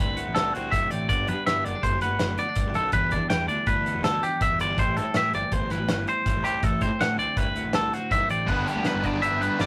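Playful and intricate, this short cut from a longer piece sits between math rock and midwest emo, moving in a brisk, straight 5/4. A bright, twangy electric guitar sits up front with clean picked arpeggios, while a chiming twelve-string electric guitar fills out the accompaniment lower in the mix over jazzy seventh chords. A fuzz-drenched picked bass growls underneath, and a loose indie drum kit enters at 0.2 seconds with a punchy kick, dark cymbals and a pumping room sound. At 8.5 seconds a biting, double-tracked overdriven guitar joins up front with a riff as the harmony returns to Gmaj7. The rough rehearsal-room recording carries a modest booth ambience and saturated glow.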